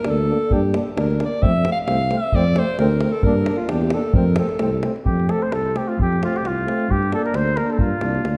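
Virtuosic and exuberant, this swung Balkan brass band fragment opens with a clear, vibrato-laden alto saxophone solo up front, set over a mellow, soft-attacked tuba bass line, a deep, dry davul, and a distant trombone and dark, smooth-topped euphonium in the background, before a punchy, vintage-toned trumpet takes the melody at 5.1 s, all of the horns played in a classical style and set in a reverberant recital hall.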